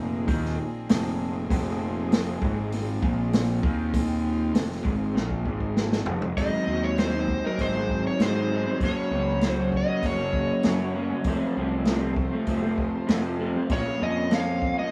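Psychedelic rock at 98 BPM in a mysterious, dark mood, where a dark, slightly broken-up guitar riff through a small old amp with flanger and analog delay rides over fuzzy, overdriven fingered bass and an up-front vintage drum kit with a tight kick, while a very quiet analog drone sustains through the opening section and distant, floating chamber strings hold sustained chords throughout. A drum fill at 5.2 seconds leads into an overdriven slide guitar melody at 6.4 seconds, where the drone fades out, all in an echo-heavy mix with small room ambience and little reverb, over chords moving from Fm7 to Bbm.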